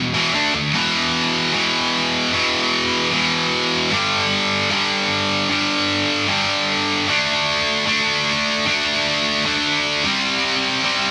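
Driving and menacing, this rock excerpt in E minor moves at 151 BPM in a straight 4/4. It features a lone heavy high-gain guitar playing throughout, bright and distorted, picked and double-tracked, sitting up front and ranging from E2 to D4 over power chords on D, E, G and C. The band-in-one-room sound carries a moderate studio ambience and a dark top end, with a section beginning at 0.7 seconds and running to the cut at 11.1 seconds.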